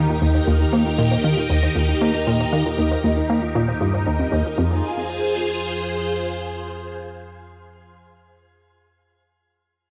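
A straight 4/4 pulse carries this short section cut from a longer piece of ambient, sequencer-driven space music, cosmic and expansive in mood. A punchy, funky analog bass riff with a wave-folded edge and a decaying filter pluck drives the low end, treated with analog chorus and delay, while a mellow, nasal drone with pulse-width modulation hums beneath it. Up front, a bright, swirling string machine holds sustained chords through ensemble chorus, phaser and shimmer reverb, moving from Eb to F minor as the second section begins at 4.6 seconds. Tucked in the background, a soft, round pluck plays gentle, warbling arpeggios, dark in tone and coloured by vintage 12-bit sampler grit, spread with delay and shimmer reverb. The bass and pluck stop at 4.8 seconds and the drone drops out at 6.1 seconds, leaving the strings to ring on alone. A wet spring reverb and the character of a home cassette recording give the whole passage a homemade feel.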